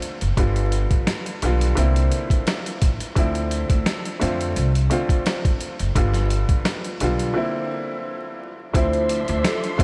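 A woody pizzicato upright bass sits up front in this gritty, reflective boom-bap hip-hop excerpt, set at 86 BPM in 4/4 with a light 16th-note swing in D minor. Beside it, a compressed, pitched-down sampler-style drum kit delivers a thumpy kick, a medium-tuned snare and hi-hat, carrying the roomy character of a re-recording in a large space. An intimate upright piano with audible action noise and short sustain plays filtered accompaniment over chords moving through G7, C9, Dm9 and F6, and a break arrives at 7.3 seconds. At 8.7 seconds a new section opens on Dm9, where a mellow vibraphone played with soft mallets adds a brief, airy melody with slow motor vibrato and a diffuse ambient delay, joined by a quiet, bowed studio string section holding smooth, expressive chords with vibrato and portamento. Vinyl crackle and light studio reverb give the whole piece a dusty, lived-in sound.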